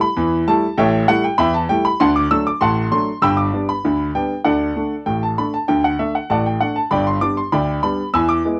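A clear, worn grand piano plays solo and up front through this lively, cheerful ragtime fragment in G major at 98 BPM in a straight 2/4, its short-sustained notes spanning G1 to E6 over an A7, D and G progression and colored by cassette tape in a moderate booth ambience, like a home recording cut from a longer piece.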